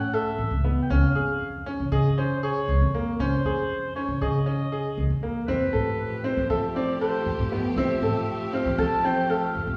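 A solo oboe with light vibrato and a smooth top carries the melody over brilliant baby grand piano arpeggios and a woody, thumpy pizzicato upright bass in this playful, shimmering piece of contemporary chamber music in 9/8, with a lush bowed string section adding sustained chords from 5.5 s, the whole heard from further back in a reverberant recital hall.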